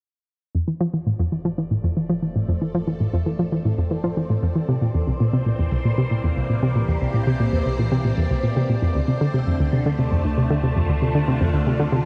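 Bathed in a huge ambient reverb with a long, cosmic tail, this excerpt of sequencer-driven space music has a luminous feel in a straight four. A hollow, bouncy square-wave pluck sits up front playing a warbling, vintage-sounding riff, its ring-modulated tone thickened by chorus and trailed by tape echo while a filter sweep runs across it. Alongside it, a phased string machine holds swirling, slowly evolving sustained chords through ensemble chorus, fading in from 0.5 seconds. A fat, saturated analog bass stays in the background and also fades in, and from 1.5 seconds a bubbling, resonant texture with random filter steps adds a bright, chorused glimmer with its own reverb. The harmony moves from F to C7 and then to Dm7.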